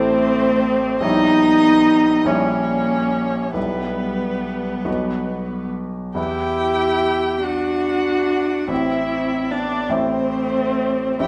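Melancholic and elegiac, this fragment of a slow romantic movement for piano quartet in E minor moves at 47 BPM in 6/8, with uneven beats and free rubato. A veiled, con sordino violin carries the melody over a dark bowed cello second line. The viola sits up front with a soft attack and sliding portamento, and a clear, polished grand piano, its action noise audible, moves through Am, A#dim7, Em/B and B toward Em. A wet stone room lends the strings and piano a lingering glow, and a faint mains hum sits beneath the whole recording.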